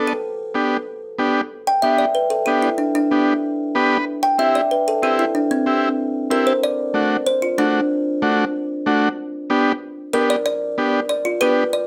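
A plucked kalimba and a vintage combo organ open this sunny, danceable Latin excerpt together, both placed up front in a close, detailed recording with light reverb. The kalimba carries the melody with a woody, ringing tone and a bright thumbnail pluck off a solid board. The organ supplies buzzy, clean accompaniment with a light vibrato beneath it. At 1.5 seconds the kalimba moves into a solo, and the transistor organ drops in a short fill at 3.6 seconds. The harmony moves from G to C and D before returning to G, and the kalimba rings out until 11.9 seconds, where the excerpt is cut from a longer piece.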